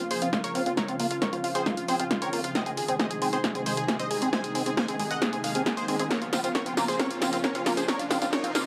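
A punchy, airy supersaw stab carries the melody over a bright unison pluck line, a lush, thick pad, squelchy liquid acid bass arpeggios with a filter sweep, an up-front analog drum machine of hi-hat, snare and tambourine, a background electronic kick, a barely audible tight sequencer bass and a very quiet riser from 2.3 s, all at 135 BPM in Bb minor, in this emotional, bittersweet uplifting trance build-up with a drum fill, sidechain pumping on the synths and a dark production with light reverb.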